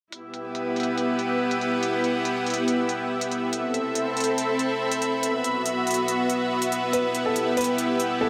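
Set to a half-time 4/4 pulse, this heavy wobble dubstep excerpt feels aggressive and menacing, with crisp, low-pass-filtered electronic hi-hats ticking beneath a lush, detuned supersaw pad that holds bright, up-front sustained chords. A pure, floating studio string section adds bowed texture above, all inside a small digital room ambience. At 6.9 seconds a clear grand piano enters with a short, vintage-toned melody touched by delay.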